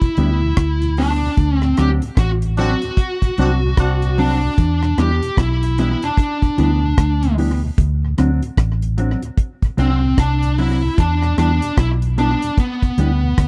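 Meditative and hypnotic, this roots reggae excerpt moves at 75 BPM in 4/4 with a swung sixteenth-note feel in E minor, cycling between Em7 and D7. A deep, acoustic drum kit sits up front with a tight kick, hi-hat and rim click, joined at 0.2 seconds by a dark, round, punchy muted fingered electric bass that is amped and foam-muted. A bluesy overdriven lead guitar carries the melody, its picked, distorted tone pushed forward and trailed by tape echo, while a clean, compressed, fingered electric guitar adds accompaniment with its own tape echo. Underneath, a very quiet tonewheel organ lends soft, flute-like colour through a slow rotary speaker. A distant, roomy horn section with light vibrato plays a brief second line from 2.6 to 4.4 seconds, echoed on tape, during a band accent. The sound is dry and close, like a 1970s studio recording with little reverb.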